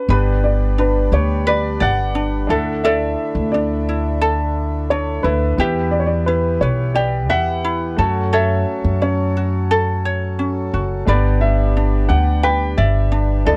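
A straight 4/4 pulse carries this sunny, carefree acoustic pop fragment, where a dark, mellow upright piano with audible action noise sings the melody over light, fingerpicked ukulele, a clear, polished concert grand tucked in the background, breathing, reedy pedal harmonium chords and an up-front, thumpy pizzicato gut-string upright bass, all captured dry on cassette tape as the chords move from G through Dsus2, Em and F#m back to G.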